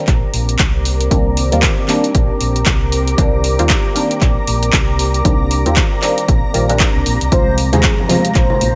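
A punchy, tape-warm kick and analog drum machine handclaps and hi-hat swing at 116 BPM in this hypnotic, late-night deep house excerpt in C minor, where a round, dark fingered electric bass and muted, resonant dub chord stabs with phaser and echo pump against the kick over a moody, warbling ambient pad, a silky string pad and a blurred granular cloud pad, all sidechained and bathed in light digital ambience, until a mellow horn-like synth lead enters on the shift from Cm9 to Fm at 7.3 seconds and distant, ringing congas join at 7.7 seconds.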